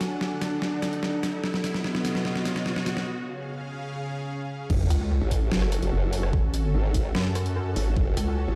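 Chaotic and heavy, this half-time wobble dubstep cut from a longer piece runs at 147 BPM in F# harmonic minor. A build-up over D, B and C# chords brings together a lush supersaw pad with sidechain pumping, a dark, lo-fi warbling pad with chorus in the background, an electronic riser and sub drop, and an overdriven dubstep kit up front with a deep snare, bright hats, crash and rim clicks, before a short break at 3.1 seconds. At 4.7 seconds the drop lands on F# minor with a knocking overdriven electronic kick, a detuned sawtooth wobble bass sweeping through a formant filter, and a saturated pulsing pluck wobble bass entering at 4.9 seconds, all in a stone-room ambience like a big sound system in a bare room.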